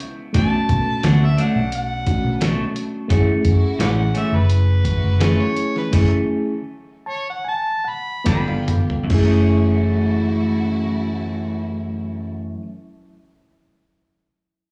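A straight-eighth soul blues in 4/4 at 70-87 BPM, this mournful, smoky excerpt in F# minor rides on a muffled, compressed sampler-style drum kit with a thumpy kick and fat snare, a dark, foam-muted fingered electric bass, and an up-front, slightly broken-up electric guitar playing picked stabs through spring and plate reverb with slapback echo. A gritty, overdriven harmonica takes a jazz-style solo with tongue slaps and scooped notes over Bm7 and F#m7 as the tempo slows from 3.1 seconds, while a reedy, worn electric piano with fast tremolo comps and adds a fill, and a distant, lush bowed string section sustains chords behind them. After a stop and a drum fill over G7 that ends at 9.1 seconds, the drums drop out, and the remaining parts return to F#m7 in the hazy ambience of a club heard through the venue's PA.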